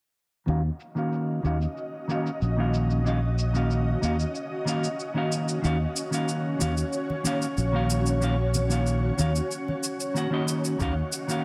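A growly, bright fingered bass sits up front in this relaxed sunset chillout fragment, anchoring an Ebm7 chord beneath a dark, clean semi-hollow guitar that carries a filter sweep, digital delay and shimmer reverb. An ethereal, airy pad drifts in at 1.3 seconds with chorus and tremolo, while a tape-warm shaker keeps time and very quiet, close congas appear from 6.6 seconds. A lone electronic kick lands near the end, and a faint, breathy wind-like texture surfaces at 11.0 seconds, all set in a lush hall reverb.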